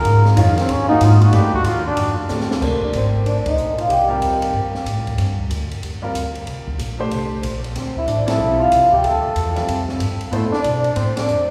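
A swung 4/4 pulse at 187 BPM drives this intense, hypnotic modal jazz excerpt, with woody, growly pizzicato upright bass up front and an open kit of dark cymbals, a high-tuned snare and a boomy kick. A clear trombone with vibrato solos from the start over the intimate piano, whose action noise is audible; a drum fill leads into the next section, where a ringing vibraphone with its motor off takes the melody at 2.6 seconds and returns at 7.8 seconds beside the trombone. After the opening Eb9sus4 and G7, band accents punctuate the Cm9 and Dm9 harmonies, and a long cathedral reverb surrounds the whole group.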